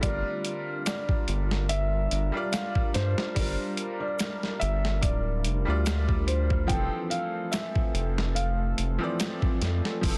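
A smoky, cinematic trip hop excerpt moves at an unhurried, slightly swung pace, cut from a longer piece and settling on Gm7 before shifting to Fmaj7 at 6.7 seconds. A felt-muted upright piano carries the melody in a soft, intimate voice, its thick felt and audible action noise adding a close, hushed texture, while dub echo trails its phrases. Beneath it, a second upright piano with a brilliant, woody tone plays the accompaniment through harmonic tremolo and tape echo, and a warbling, nostalgic tape-like pad holds sustained chords in the background with chorus and its own reverb. A round, deep analog bass sits up front alongside a gritty boom bap sampler-style kit, whose thumpy kick, medium-tuned snare and hi-hat are overdriven and compressed with a small-room character. An egg shaker rings faintly in the background from 0.9 to 9.4 seconds, and the whole mix carries light studio reverb under a dense, heavily limited modern master.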